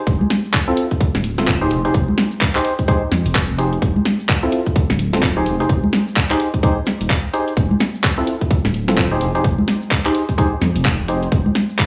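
UK garage in a two-step style, this bouncy, late-night clip is cut from a longer piece and rides a swung sixteenth-note groove in 4/4. Up front, a tight electronic kick sits with a layered garage kit of cracking snare, bright hi-hats, handclaps and congas, while a grainy egg shaker sits close but in the background. Underneath, a deep, rumbling detuned sawtooth bass with a saturated, beating tone pumps with sidechain compression. A hollow, organ-like percussive stab, mellow and decaying, carries the harmony with subtle chorus and digital delay, trading between Dm7 and Fm7 throughout. Light digital reverb gives the mix a touch of space, and the stabs drop out at 11.3 seconds as the drums carry on to 11.9 seconds.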